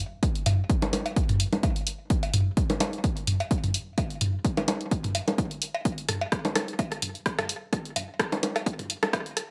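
Hypnotic and quirky, this techno fragment at 128 BPM in 4/4 with a lightly swung 16th feel is a build-up under a filter sweep. An up-front, overdriven, layered electronic kick drum runs from 0.2 to 9.2 seconds, beside a tape-toned analog drum machine whose high-passed hi-hat and its rim click sit in a small room, while from 0.5 seconds a produced electronic kit of bongos, cowbell, rim click and toms, up front in a large room, is treated with tape echo, all captured as a dry, gritty hardware recording with light reverb.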